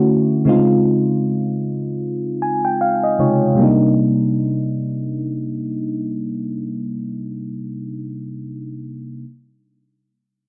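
The recording is dry and gritty, with a hardware character and a low-pass filter that darkens the tone, and the sound sits close with little room around it. This short R&B fragment moves at 77 BPM in 4/4, its sixteenths carrying a gentle 58% swing, and the mood is late-night and full of longing. A mellow FM electric piano carries the whole 9.2 seconds as accompaniment, spanning C3 to Ab5 with a round, warbling, vintage voice, a noise layer, quick attacks that decay, and a chorus effect. A filter sweep runs through the opening passage while the piano rests on a Dbmaj7, and from 2.0 seconds it adds a fill. At 3.6 seconds the harmony shifts to Cm9 as a new section begins, with the whole piece tuned slightly sharp to A4 = 441 Hz.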